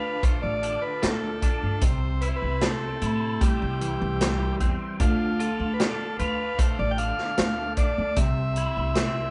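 A straight, steady 4/4 groove from a vintage acoustic drum kit drives this trippy, hypnotic psychedelic rock fragment, its hi-hat, punchy kick and medium-tuned snare entering at 0.2 s and sitting up front with a rolled-off top. Beneath it, a pizzicato upright bass with steel strings gives a woody, thumpy low end. A clean, picked twelve-string electric guitar plays a bright, twangy, compressed riff through a rotary speaker, while an overdriven combo organ carries the buzzy lead melody up front. A second combo organ, clean with light vibrato, holds sustained chords in the background as the harmony moves between D minor and C. The band plays live together in one stone room with moderate reverb, and the passage is cut from a longer piece.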